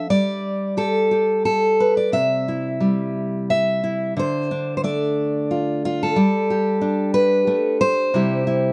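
A fingerpicked steel-string acoustic guitar carries this brief folk passage on its own, sitting up front with a warm, auditorium-sized body. The mood is pastoral and warm, set in C major and 3/4 at about 90 BPM, though the playing moves with a loose, rubato feel. After an unaccompanied opening figure, the harmony settles on C at 2.1 seconds, then moves through Dm and Gadd9 before returning to C at 8.1 seconds. The guitar ranges from C3 up to E5. Close, detailed microphones catch every string, and a light touch of reverb adds some air around them in this short cut from a longer piece.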